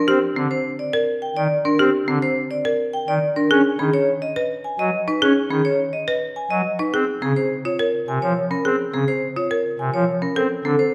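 A dark, ringing vibraphone with fast motor vibrato carries the melody up front in this meditative, hypnotic minimalist classical pattern piece at 105 BPM in 3/4, over woody, rustic folk marimba arpeggios and a thick, romantically voiced pipe organ on foundation stops, all set in a wet recital hall reverb as the chords move from Cm7 through Abm7 and Db6 to a rootless Bbmaj7 at 10.4 seconds.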